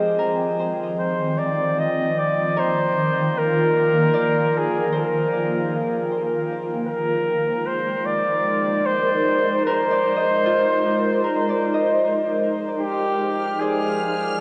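Melancholic and serene, this slow ambient excerpt in F dorian at 76 BPM sets a clear, vintage-toned flugelhorn melody with light vibrato, entering at 1.0 seconds, over a shimmering, ethereal pad of sustained Ebmaj7 and Fm7 chords with chorus and phaser, ringing fingerpicked Celtic harp arpeggios with delay, and a mellow analog drone that fades gradually across the first 12.8 seconds, as a reversed, bright swelling texture appears at 12.9 seconds, all bathed in huge reverb and the warbly pitch drift of worn cassette tape.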